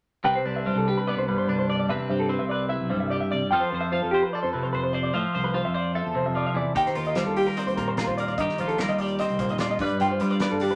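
In a straight four-four pulse, this intricate, playful math rock and midwest emo fragment from a longer piece pairs a bright, clean, twangy twelve-string electric guitar with slightly broken-up, lo-fi arpeggios from an electric guitar through a small old amp, both up front over a growling, overdriven fingered electric bass, moving from Cmaj9 through Fmaj7 and Eb69 to G7 in moderate studio reverb, with a loose indie drum kit bringing a fat snare, punchy kick and pumping room sound in at 6.8 seconds.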